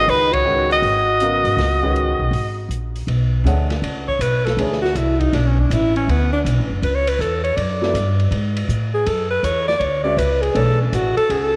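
A cool, intense modal jazz excerpt swinging at 160 BPM opens with the full band striking an accent, a vibrato-laden soprano saxophone carrying the melody until 2.7 s over a scooped alto saxophone second line, an intimate, slightly detuned upright piano with audible action noise, a woody, thumpy pizzicato upright bass up front and a dark, rolled-off drum kit with a boomy kick, before the alto takes a solo from 3.1 s as the music settles into B dorian, the piano dropping out between 5.2 and 7.8 s, all within a moderate echo-chamber reverb.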